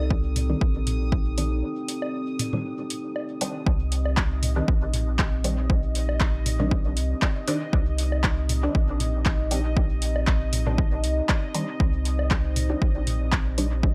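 A dry sound with little reverb frames this cavernous, hazy dub techno excerpt in C dorian, moving at 118 BPM in 4/4 with a light 16th-note swing and resting on a C minor chord. An overdriven, punchy analog kick sits up front from 0.1 seconds beside a clean, smooth sine sub bass, and every part but the kick and the drum machine breathes with sidechain pumping. The drum machine adds gritty handclaps and hi-hat thrown into dub echo, while tape-warm electronic toms and woodblock, re-recorded in a large room, sit in the background with their own echo. A muted, detuned sawtooth and pulse-wave chord stab with a filter pluck and short decay runs through a phaser and dub echo under a filter sweep across the whole excerpt. Above it, a moody, wave-folded analog pad holds slow-blooming chords with subtle chorus, and a bright, resonant texture bubbles through random filter steps with chorus and its own reverb. 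A break from 1.6 to 3.7 seconds opens a gap in the groove.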